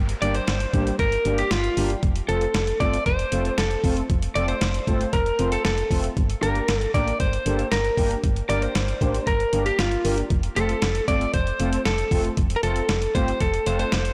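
A straight 4/4 groove from a gritty, pitched-down, sampler-style drum kit with a thumpy kick sits up front in this melancholic, nocturnal synth-pop excerpt, where a very quiet electronic downlifter ends by 2.0 seconds, a punchy, round FM bass anchors the low end, a slightly broken-up picked electric lead guitar carries the melody, and mellow, detuned sawtooth synth brass with chorus and vibrato fills in behind, all moving between Gm and F inside a moderate concert-hall reverb on a blown-out, overdriven recording.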